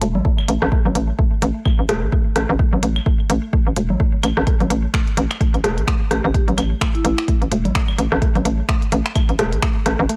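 A swung sixteenth-note groove in 4/4 drives this clinical, hypnotic minimal techno excerpt, anchored by a deep, up-front electronic kick, a hollow, bouncy FM bass that pumps against it, and a clicky kit of finger snaps and hi-hat. Layered electronic congas, claves, rim click and bongos, re-recorded in a large room and echoed by delay, sit alongside a woody, round synth pluck riff carrying chorus, delay, sidechain pumping and a filter sweep throughout. At 6.1 seconds a metallic, ringing vibraphone struck with hard mallets adds a brief boxy phrase with fast motor vibrato, all in a dry, close mix.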